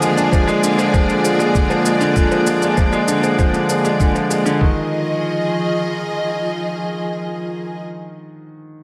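Piano and strings electronica with a hypnotic, cinematic mood, this fragment of a longer piece sets a brilliant baby grand piano riff with long sustain and tape echo, heard through 8.8 seconds, over intimate, bowed sustained chords from a sul tasto string section with vibrato and a soft attack, while an overdriven, layered electronic shaker and a muffled, thumpy, pitched-down kick drum play until about 4.7 seconds, the whole mix sitting in a moderate echo chamber reverb as the harmony moves from Bb7 to Fm7.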